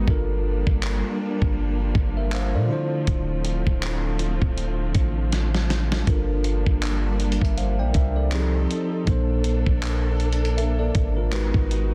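Contemporary R&B at 80 BPM in G dorian with a sensual, longing mood, this excerpt pairs a bell-like, clean tine electric piano with lush, bowed studio strings carrying sustained chords, while a deep, boomy 808-style bass and a gritty, sampler-style soul drum kit (thumpy kick, fat snare, hi-hat and handclaps, re-recorded in a large room) sit up front in a swung groove, broken by a drum fill at 5.3 seconds, over chords moving from Gm7 through Dm7, F7 and Bbmaj7 to Abm7, all in a dense, heavily limited modern master.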